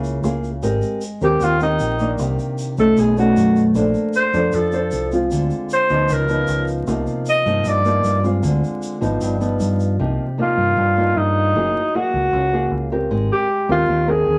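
A straight four-beat bossa nova groove opens this melancholic, intimate fragment, with a thumb-plucked nylon-string guitar comping up front over a round, dark fingered electric bass while a grainy, bright tube shaker ticks along until it drops out at 10.0 s. A breathy alto saxophone enters at 1.2 s and carries a mellow, subtone jazz solo with light vibrato and a soft attack, sitting distant and roomy yet clearly leading. Rich extended chords like Abmaj9, Cm9 and G7b13 drift beneath it, all wrapped in a moderate club reverb and a layer of vinyl crackle.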